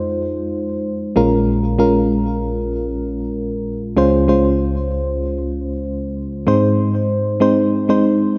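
Pop excerpt at 96 BPM in Ab major, uplifting and nostalgic, where a lone FM electric piano with a vintage, warbling tone and mellow, decaying notes sits up front through digital delay, lightly swung on the sixteenths over Fm7, Bbm7 and Dbmaj7 before arriving on Ab at 6.5 seconds, set in a lush hall reverb and a dark production.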